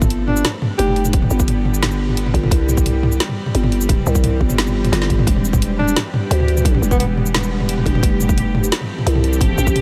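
Tense and cinematic, this half-time drum and bass excerpt at 174 BPM in E phrygian moves through G, C, Em and F over a growling, buzzy 808-style bass, a tight electronic kick, and an up-front drum kit with a woody snare, bright hats, shaker and toms that plays a fill at 4.9 seconds. A string-like, detuned drone of sustained chords carries vibrato, built-in reverb and sidechain pumping, while a subtoned alto saxophone sits in the background with tape echo, playing brief jazz-style solo phrases at 0.3 and 5.8 seconds. From 6.3 seconds a reversed, dreamy granular texture swells in on a single high note, shimmering with ensemble chorus and reverb inside a light digital ambience.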